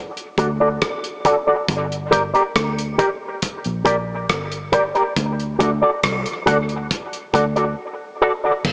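A cloth-damped, thuddy drum kit with tight kick, rim clicks, hi-hat and dark crash cymbal opens this deep, meditative dub reggae fragment, soon joined by a filter sweep on clean, compressed electric guitar and a round, foam-muted vintage bass, while the up-front envelope-filtered guitar, coloured by ensemble chorus and dub echo, floats through a moderate plate reverb in an echo-heavy mix with a small-speaker sound.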